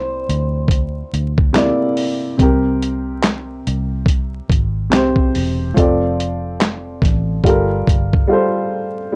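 Melancholic and reflective, this lo-fi hip hop excerpt opens with a brief tape-echoed clean electric guitar phrase over a dark, woody upright piano with audible action noise and a round, foam-muted vintage bass, while a gritty, thumpy sampler-style drum kit of kick, snare, hi-hat and handclaps enters at 0.3 seconds and drops out for a break at 8.3 seconds, all wrapped in dry hardware grit, transformer saturation and vinyl crackle.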